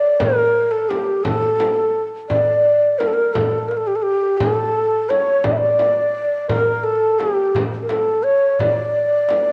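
Arabic maqam ensemble music in a straight 6/8, this brief passage cut from a longer piece carries a longing, soulful mood. A breathy, end-blown ney leads the melody from the opening moment, its reed-cane tone mellow and straight, with tongued notes, rolled-off highs and a touch of tape echo placing it up front. Beneath it, a very quiet baroque flute of pure wooden sound traces a second line with gentle vibrato and tongued articulation. From 0.2 seconds a metal-shelled darbuka played with hard hands adds crisp strokes in a small-room acoustic, while a large frame drum sounds deep and distant, as if from a bigger hall. Light studio reverb and the soft grain of a home cassette recording give the whole performance an intimate, slightly worn character.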